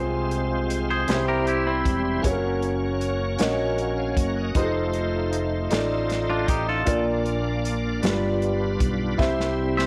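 Soulful and fervent, this slow gospel passage in 6/8 features a dark, mellow baby grand piano up front and a bright, shouting tonewheel organ holding sustained chords through a slow rotary speaker, light overdrive and chorus vibrato. A round, punchy fingered electric bass anchors the low end beside an airy, polished country drum kit with a medium-tuned snare, which closes with a fill at 9.2 seconds. A clean, compressed, twangy electric guitar adds a picked second line briefly from 0.9 seconds and again from 6.3 seconds, all set in a small room with light reverb.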